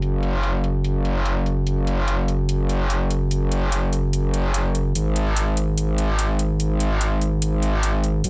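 Heavy and aggressive, this short cut from a longer heavy wobble dubstep track moves in a half-time feel with a light swing on the sixteenths. A metallic wobble bass dominates from start to finish, sitting low between F#1 and B1 and pushed up front with a bright, distorted, compressed edge layered with chorus and overdrive. Its FM and sine character comes with a fast attack and a sustained, wobbling body. An electronic hi-hat runs alongside it for the full 8.3 seconds, set well back in the mix, its layered, produced metallic hats softened by a low-pass filter and given a touch of studio reverb. The overall sound is dry and close, leaving the bass to carry the weight of the passage.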